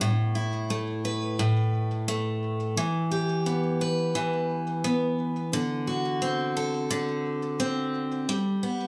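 A bright, up-front picked steel-string acoustic guitar with fresh strings plays alone through this intimate, wistful folktronica fragment of just under 9 seconds, its lightly swung 16ths moving through Asus2, Em, D7 and Gadd9 inside a moderate studio reverb.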